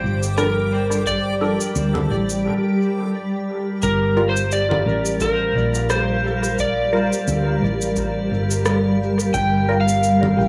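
A spacious, echo-heavy mix sits in a small room with a moderate spring reverb, giving this short cut from a longer ambient dub piece a deep, unhurried feel at 87 BPM in 4/4 with a swung sixteenth-note lilt in G minor. Up front, a slightly broken-up electric slide guitar carries the melody through dub echo, while a dark, round, punchy hollow-body bass holds the low end beneath it. A cloudy, blurred granular pad sustains chords throughout, moving from D5/G to Gm7 at 3.8 seconds. A muted sawtooth chord stab with a filter sweep, phaser and dub echo sits in the background. Tape-warm electronic cabasa, rim click and congas, re-recorded in a large room, carry dub echo, and an analog kick thuds further back. A bright, reversed, dreamy texture drifts in the background only until 2.5 seconds.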